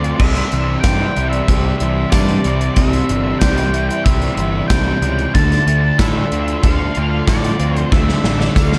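A gated drum kit with a punchy kick, bright cymbals and a polished stone-room sound drives this blissful, dreamy shoegaze and dream-pop excerpt at 93 BPM in C major, up front beside a fuzzed, overdriven picked bass, while a dark octave-fuzz lead guitar carries the melody with slapback echo over sustained chords from a moody, detuned analog pad with chorus. In the background, a thick fuzz guitar with ensemble chorus and two crunchy overdriven guitars play riffs, one of them very quiet and double-tracked and the other touched with reverse reverb, and a jingly tambourine joins at 0.8 seconds. The harmony moves from C to Dm7 at 5.3 seconds in a dark, dry production, and a drum fill arrives at 7.9 seconds.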